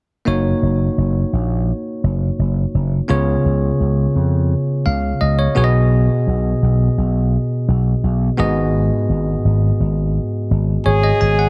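A barky tine electric piano opens the track, its bell-like, clean tone sitting close and direct as it carries the chords from 0.3 seconds in this romantic, glossy pop excerpt. Beneath it, a punchy slap bass runs through an envelope filter, giving the low end an amped, electric edge that sits just as far forward. The harmony moves through F#6, C#7, B6 and G#m7 in a straight, unhurried 4/4 feel. Only at 10.9 seconds does a warm flugelhorn arrive for a single G#4, its close-miked sound carrying a light vibrato in a pop style. Light reverb and a small room ambience give the whole a polished, intimate finish.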